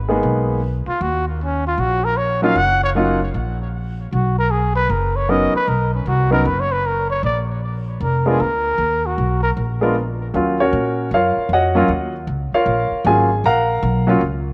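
A swung 4/4 pulse at 154 BPM drives this moody, smoky small-group swing and bop excerpt in Eb minor, where a woody, growly pizzicato upright bass and a warm, short-sustained baby grand piano sit up front under a dark, whispered trumpet solo with light vibrato, scooped notes and tape echo that plays from 0.9 to 9.5 s, all bathed in a moderate echo chamber reverb.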